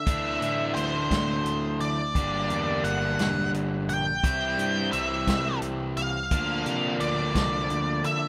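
Indie rock in 6/8, carefree and jangly, this short excerpt from a longer piece moves through Dsus2, Gm, C and Bb/D in just over eight seconds. Up front, a dark octave-fuzz lead guitar carries the melody through distortion and analog delay, alongside a bright overdriven rhythm guitar with subtle chorus and delay, while a second, darker overdriven guitar sits in the background. A growling picked bass with overdrive and a vintage drum kit with a tight kick, medium-tuned snare, hi-hat and a rolled-off top fill out a rough home-demo mix in a small room.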